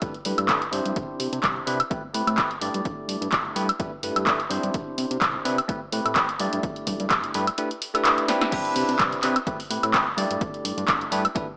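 A lightly swung groove drives this funky, sunny filtered disco house excerpt, where an analog kick and a punchy, up-front drum machine of snare, handclaps, hi-hat, crash and woodblock, its hats, percussion and cymbals pumping, sit beneath a bell-like tine electric piano with phaser and a fat, saturated analog bass, both ducking under the sidechain as a filter sweep builds through the opening 8.5 seconds before a drum fill at 8.3 seconds tips into the drop, all wrapped in plate reverb and a gritty, small-speaker hardware sound.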